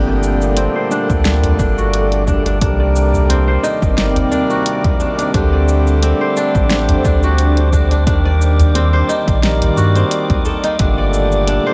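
A dry, gritty recording with light reverb carries this hypnotic, meditative organic downtempo excerpt at 88 BPM in 4/4 with a gentle sixteenth-note swing, moving through Gmadd9, Cm7, D7sus4 and Ebmaj7. A reedy, breathing hand-pumped harmonium sits up front with tape echo, sidechain pumping and shimmer reverb, while an ethereal, chorused pad and a dark, wind-like noise texture hover in the background, and a bright, fingerpicked kora rings out arpeggios through a low-pass filter and tape echo. Beneath them a round, deep sine sub bass anchors the low end, joined from 0.2 seconds by an overdriven deep house kit with a fat snare, hi-hat and shaker, from 1.1 seconds by a punchy electronic kick, and from 1.4 seconds by a small, distant udu.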